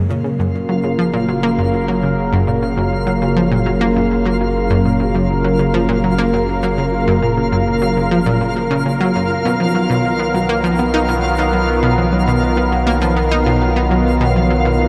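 A huge, wet ambient reverb with a long 8.3-second tail washes over this cosmic, expansive slice of sequencer-driven space music, cut from a longer piece and moving at a straight 101 BPM in 4/4. Up front, a sweeping resonant pad of detuned sawtooth tones holds sustained chords with a slow filter swell and chorus, its sound evolving from Gb toward B at 9.3 seconds. Beneath it, a bright analog pluck plays a riff with a fast attack and a decaying tail, its chorus, cassette-tape colour and delay giving it a hazy, detuned edge. A round analog bass, deep and dark with a triangle-and-sine body, sits low and sustained in the mix. From 0.2 seconds a twinkling granular texture adds sparkling FM shimmer an octave up, with a slow attack, long release and its own reverb.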